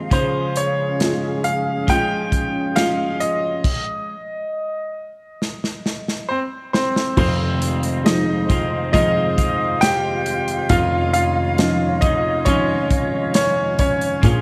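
In a straight, unhurried 4/4, this melancholic, heartbroken pop ballad excerpt opens with a dark, woody, slightly detuned upright piano accompanying a brilliant grand piano melody that sits up front with long sustain and a slapback echo. Twangy, clean twelve-string electric guitar arpeggios and a breathy flute section holding sustained chords with vibrato in the background fill out the sound, while an airy acoustic drum kit with a punchy kick and medium-tuned snare drives the beat. A stop arrives at 3.6 seconds, a drum fill runs from 5.4 seconds, and the song moves into its second section at 7.2 seconds, all bathed in a moderate echo-chamber reverb.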